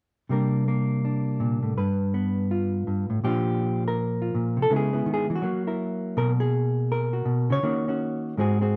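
A dark, clean hollow-body electric jazz guitar, fingered and up front, plays solo from 0.3 to 8.8 seconds in this relaxed, playful solo jazz excerpt at 164 BPM in 4/4 with a swung, rubato feel, moving through chords from Csus2 and G7 to Bb6, Dbm7 and Ebm7 in a moderate studio reverb that lends a live-room sense.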